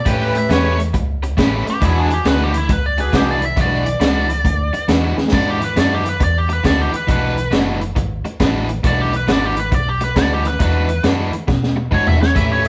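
Electric blues shuffle at 136 BPM in E mixolydian, laid-back and rollicking, where a biting, overdriven lead guitar solos up front over a cranked stack guitar riff, a round, foam-muted vintage bass, gritty breakbeat drums with dark cymbals and a high-tuned snare, and close-miked jazz horn stabs that play only until 3.5 seconds, moving from A9 to E9 in a live room with moderate reverb, with drum fills at 5.1 and 11.5 seconds in this excerpt from a longer piece.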